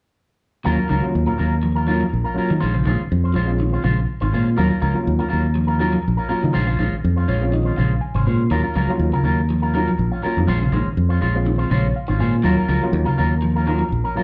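Heard through a club PA with a light room reverb, this short cut from a longer afrobeat piece feels intense and hypnotic, swinging gently over a steady 4/4 as Ebm9 and Bbm9 chords alternate. A round, punchy fingered bass sits up front while a dark, slightly broken-up guitar picks arpeggios in the background and a clean, envelope-filtered guitar adds picked stabs, both carrying slapback echo. A gritty, reedy electric piano with fast tremolo and slapback echo comps through a combo amp and breaks into fills at 7.0 and 11.5 seconds.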